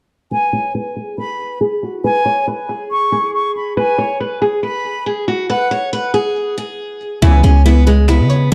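A half-time trap beat at 139 BPM in C# minor opens with a boxy picked steel-string acoustic guitar melody under a filter sweep and an airy flute line with vibrato, both with digital delay, before the menacing, eerie excerpt lands on C#m7 at 7.2 seconds, where a punchy, heavy 808-style bass sits up front, a very quiet snappy cajon, a twangy chorused resonator pluck and brief mellow brass stabs in the background join, all in light small-room reverb with a dark production.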